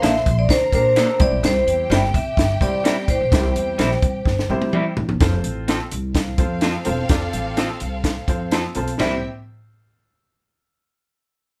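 Uplifting and warm, this uptempo 1960s-style soul cut moves at 127 BPM in C mixolydian, passing from Gm add9 to C and then F with the feel of a band playing live in one room. A bright, ringing vibraphone carries the melody until 4.5 s, overlapping a drum fill that begins at 4.3 s, while a lush, distant bowed violin section adds a second line over a woody upright piano, slightly broken-up lo-fi guitar stabs, dark pizzicato upright bass, and a dry, up-front cocktail kit with a punchy kick and high-tuned snare. The piano steps forward with a fill at 8.0 s, all set in a moderate studio ambience.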